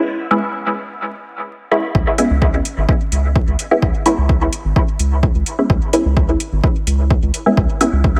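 A muted, detuned dub chord stab with phaser, dub echo and sidechain pumping opens this deep, meditative dub techno excerpt alone over vinyl crackle in a light digital ambience, until a round, nasal analog bass with sidechain pumping and a punchy, overdriven kick drum arrive at 1.9 seconds, followed at 2.2 seconds by dry, metallic, overdriven hi-hats.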